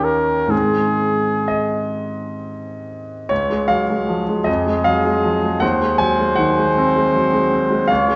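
In a rubato 6/8 that drifts between 40 and 54 BPM in dotted quarters, this serene, tender romantic classical duo in Ab major is cut from a longer piece and tuned to A4 = 444 Hz. A warm, classical-style trumpet sings the solo melody up front, while a bright, brilliant grand piano supplies intimate accompaniment with long sustain and audible action noise, moving from Eb7 and Ab into a new passage at 3.3 seconds that passes through Db and Fm to Ab7/Eb at 5.6 seconds. A recital hall's reverb surrounds the duo in a dark, warm production.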